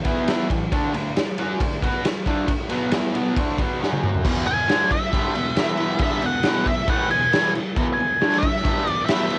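A fuzzy, dark octave-fuzz lead guitar cuts in at 4.5 seconds over a bright, double-tracked fuzz guitar riff and a punchy, gritty garage drum kit with a medium-tuned snare, all up front and tape-saturated in this raw, rowdy garage rock excerpt at 136 BPM in E mixolydian, where a drum fill at 3.8 seconds leads into the second section.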